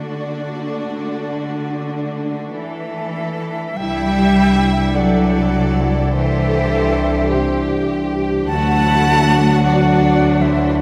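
Drenched in the long, echoing reverb of a vast cathedral, this moving, uplifting cinematic film score fragment drifts at a rubato 51 BPM in 6/8 in C lydian: smooth, lightly vibrato violins, lush, intense violas and rich, distant cellos play from the start; a pure, expressive flute with a soft attack enters at 2.6 seconds; and at 3.8 seconds a clear violin melody sits in the background over mellow French horn chords and intense bowed double basses placed up front, as the harmony moves from D to Cadd9 and back to D.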